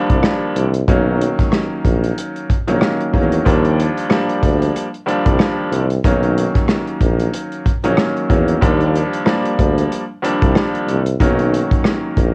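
Swung sixteenths drive this confident, soulful boom-bap hip-hop cut from a longer piece, with a dark, smooth soul drum kit of punchy kick, medium-tuned snare, rim click and hi-hat sitting up front with a rolled-off, cassette-worn top. A punchy tuba carries the low end in a classical style, while a bright grand piano, filtered and tape-coloured, rings with long sustain and audible action noise over alternating Ebmaj9 and Bmaj9 chords. The dry, intimate home-cassette sound keeps every part close, the whole run lasting about 12.3 seconds.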